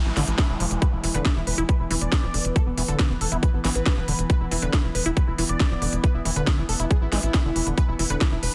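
A brief noise sweep in the background opens this hypnotic, driving psychedelic trance cut alongside a resonant, ring-modulated drone with moving overtones and 12-bit sampler grit, a squelchy liquid acid bass riff treated with phaser and delay, and a very quiet, dark, nostalgic tape-like pad that warbles softly behind them. A punchy sawtooth sequencer bass arrives at 0.1 seconds, a drum and bass kit with a cracking snare and crisp hats at 0.2 seconds, and a tight, up-front electronic kick at 0.4 seconds, while the drone, acid bass and lead pump with sidechain compression. At 0.8 seconds a thick, nasal, detuned unison lead with vibrato and a sub octave carries the melody, all in a dry, dense, heavily limited modern mix.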